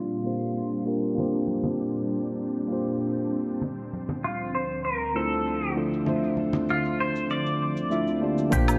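A straight 4/4 pulse at 98 BPM carries this relaxed, wistful sunset chillout fragment in D minor, cut from a longer piece. Cabasa and woodblock set the groove from the start, overdriven, layered and filtered, with a small-room character. Ringing, dry congas played with soft hands join at 1.2 seconds. Up front, a clean pedal steel guitar with fingerpicks, slide and volume swells sings the melody through analog chorus and delay, over a mellow, direct tine electric piano with its own delay and an ethereal, airy pad of detuned sawtooth and triangle tones that swims in ensemble chorus. The harmony moves from Bb69 to Dm7 beneath a filter sweep, and at 8.5 seconds a woody, pizzicato upright bass with tube saturation lands on Bb1 alongside a deep electronic kick sitting in the background. A wet plate reverb and bright 1980s-style digital production give the whole a glossy sheen.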